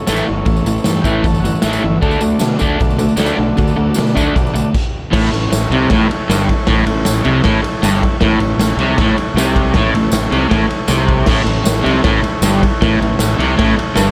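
A crunchy, double-tracked overdriven guitar riff sits up front in this swaggering, raw garage rock excerpt at 156 BPM in A mixolydian, driven by a punchy, gritty acoustic drum kit in a bright stone room, a fuzzed fingered bass, a jingly tambourine and a reedy, vibrato-tinged combo organ holding sustained chords in the background, with an organ fill at 0.9 seconds, a chord change from A to D at 2.0 seconds, and a stop at 4.8 seconds before the return to A.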